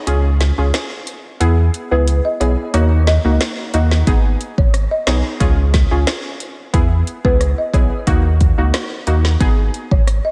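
A straight, bouncy dancehall groove in four sits at the front of this sultry clip from a longer piece, driven by an electronic drum kit with a deep kick, woody snare, rim clicks and metallic hi-hats roughened by vintage 12-bit sampler grit. Underneath, an up-front sub bass doubled at the octave blends sine and triangle tones into a full, mellow low end with fast attacks and sustained notes. A glassy wavetable pluck supplies the accompaniment, its crystalline, detuned tone carrying a noise layer, a filter sweep and a chorus sheen as each note decays. From 1.9 s a folk marimba struck with medium mallets carries the melody, its dry, rustic hardwood bars heard in a boxy small room and trailed by tape echo. The harmony cycles through C#, E, D#m and G#m, all set in a light digital ambience.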